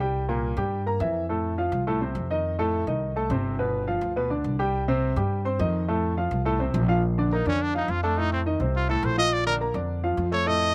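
A clear, polished upright piano and a woody, thumpy upright bass open this short Latin fragment together, setting a sunny, danceable mood at a brisk pace in straight four. The piano comps across a broad span while the pizzicato bass, with its gut-string tone, anchors the low end, both sitting up front in the mix. The opening passage moves through C7, F, F7, G7, Cm and F before settling onto Bbmaj7 at 7.0 seconds. A bright, present trumpet enters at 7.3 seconds for a pop-style solo, riding over the shift between Bbmaj7 and F7. The sound is dry and close, captured outdoors with little reverb, so every part comes through crisp and immediate until the fragment cuts off at 10.7 seconds.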